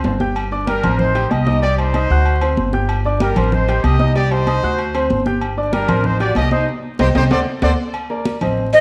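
An up-front trumpet section with a clear, smooth top and light vibrato carries the melody through an analog delay until 7.7 s, over a fiery, danceable salsa groove that cycles through Gm, Am7b5, Cm and D7. An intimate concert grand with audible action noise and long sustain, a woody pizzicato upright bass, high-tuned congas played dry with hard hands, and ringing, saturated timbales and agogo bells drive the cut, moving through a band accent and a drum fill that lands on Cm13. A breathy, bright jazz flute with a crisp chiff appears at 8.7 s, all heard in a moderate recital hall through worn, warbling old tape with vinyl crackle.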